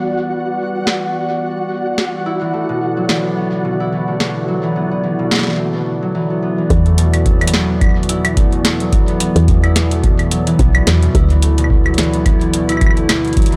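This glitchy, intricate IDM excerpt moves with a swung, shuffling 4/4 feel over a progression from Em7 to D. A hollow, flute-like pad holds mellow, chorused chords throughout, while an up-front concert harp plays ringing, fingerpicked arpeggios roughened by vintage 12-bit sampler grit and an analog delay. A flickering, grainy granular texture drifts above them with its own reverb and sidechain pumping, dropping out at 6.7 seconds. From 0.9 seconds a booming analog drum machine adds a crisp snare, metallic hats and woodblock, all softened by low-pass filtering and re-recorded in a large room. At 6.7 seconds the second section brings in a woody, round FM bass with a dark, decaying tone and a deep electronic kick. The whole mix has a dry, gritty hardware character with transformer saturation and only light reverb.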